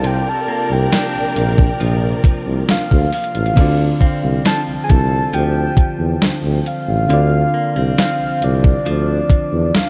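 Set in a light reverb with a digital ambience, this moody, sensual slice of contemporary R&B is built on a crisp, overdriven 8-bit drum machine with a thumpy kick, sitting up front alongside a mellow tuba bass played with light vibrato in a jazz style. A soft, round synth lead with a sub octave, chorus and tape echo carries the melody over a dark, very quiet FM electric piano and a bright, compressed clean electric guitar picking arpeggios through tape echo in the background. A warm, bowed studio string section adds expressive sustained chords with portamento before dropping out at 3.5 seconds, just before the harmony moves from C9sus4 to Dm7.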